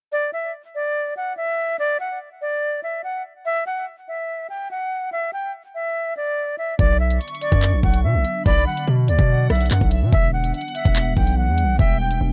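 A dark, dry production frames this cold, tense drill hip hop excerpt at 144 BPM in a half-time feel in B minor. A breathy, reedy concert flute carries the melody with vibrato through a low-pass filter and delay, playing alone until 6.8 s. At that point a heavy, aggressive distorted 808 bass and an up-front, overdriven electronic drum kit of knocking kick, hi-hat, handclaps and rim click arrive on a Bm chord. Soon after, a smooth studio violin section adds a quiet second line with delay, followed closely by a glassy FM pad drifting in the background with chorus, phaser and its own reverb, and the harmony shifts to Emadd9 at 10.1 s.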